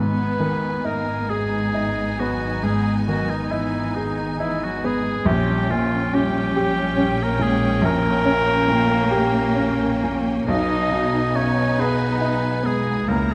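Set in a slow, rubato 12/8 at 46 beats per minute in dotted quarters, this brooding, tragic Romantic movement for piano and orchestra in G# minor is a 13.3-second cut from a longer piece. A clear, natural baby grand piano with short sustain carries the melody across its low and middle range, joined high above by a lush, smooth violin section. A second, very quiet violin section adds an expressive, soft-attacked line, while an up-front, close-miked solo oboe with a warm, classical voice shares the second line. In the background, an even viola section with a smooth top fills out the accompaniment and a focused, close cello section anchors the bass. An expressive double bass section with portamento joins the cellos on the bass, and hard-mallet timpani on calf heads sound in the background only until 1.3 seconds. A moderate scoring-stage reverb gives the ensemble a spacious setting as the harmony moves from G# minor to a diminished chord at 5.3 seconds and back to G# minor at 10.5 seconds.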